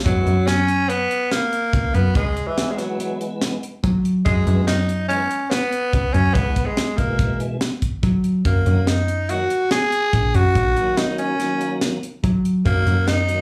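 Heard as a live club gig through the venue's PA, the recording carries a light reverb that gives the band a sense of room. It is a bright, intricate progressive instrumental cut from a longer piece, moving at 143 BPM in a straight 5/4 and set in F# mixolydian. A raspy, growling tenor saxophone takes the solo melody in a jazz style, sitting up front with a slapback echo. Beneath it, a full tonewheel organ plays accompaniment through chorus vibrato and a slow rotary speaker. An overdriven, foam-muted picked electric bass sounds dark and round up front, while a dry, polished funk drum kit with a high-tuned snare and tight kick drives the groove on hi-hat, kick and snare. All four parts play throughout, and the harmony rests on F#9sus4 before shifting to D#m at 8.5 seconds.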